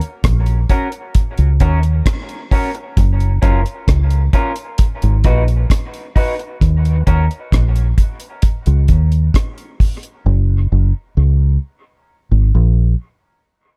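Dub reggae in a heavy, deep mood, moving at a slow, straight pulse in four, heard as a short cut from a longer piece. A deep reggae drum kit sits up front with a dry, dark sound, its tight kick joined by hi-hat and rim clicks, and it plays until 10.2 seconds. The fingered electric bass is equally forward, round and foam-muted, running low from Gb1 to Eb2 and carrying on after the drums drop away until 12.9 seconds. An electric guitar through a small old amp sits far back in the mix, slightly broken-up and lo-fi, its picked part thinned by a high-pass filter and trailed by dub echo before it falls silent at 7.2 seconds. Studio reverb gives the whole an echo-heavy space, while the harmony moves through seventh-chord colours before settling into bare, open chords as the parts thin out in the final seconds.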